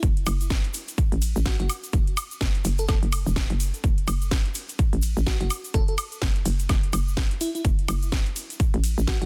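A swung 126 BPM bass house groove in 4/4 drives this gritty, aggressive clip in F# minor, built on a punchy, up-front electronic kick and a tape-warm house kit with a cracking snare, metallic hats, ride cymbal and woodblock, while a grainy egg shaker sits in the background. A hollow, bouncy FM bass pumps beneath it with overdrive and sidechain compression, and from 1.5 seconds a sparkling, bell-like FM electric piano enters, coloured by chorus, cassette tape and tape echo. The mix has a digital ambience and a dense, heavily limited modern master.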